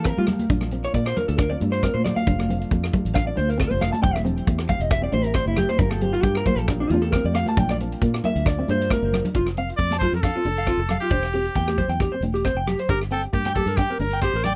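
A dry, close 1970s-style studio sound with light reverb frames this joyful, carefree highlife guitar band excerpt at 136 BPM in F major, where a slightly broken-up, lo-fi electric guitar with tape echo plays an arpeggiated solo over reedy combo organ chords, a round, foam-muted fingered bass, a vintage drum kit with a punchy kick and rim clicks, ringing high-tuned congas and a dark fingerpicked nylon-string guitar with finger squeak, until the organ stops at 9.3 seconds after a drum fill and a bright trumpet with light vibrato takes the melody from 9.8 seconds.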